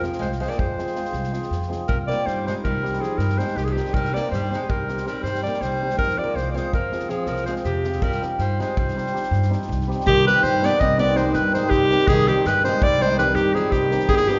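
A present, classical-style clarinet leads up front over a shimmering hammered cimbalom, woody pizzicato upright bass and a natural acoustic drum kit with punchy kick and medium-tuned snare, while a fretless, plectrum-plucked oud joins in the background at 0.2 s as a second line. This fiery, bittersweet Balkan wedding-band piece drives in a straight 11/8, moving between F minor and C minor chords before a second section arrives at 10.1 s. The players sit in a moderate concert-hall reverb with a soft, rolled-off top end, and the clip is cut from a longer performance.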